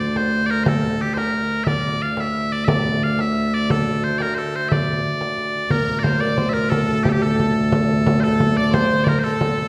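Medieval dance in a driving, ancient-feeling 6/8, cut from a longer piece, where loud, piercing bagpipes carry the melody up front over a bowed, fretted viola da gamba drone with a ringing, reedy gut-string tone and a small, close frame drum, until a nasal fiddle adds a second line at 5.7 seconds, all set back in a wet recital hall.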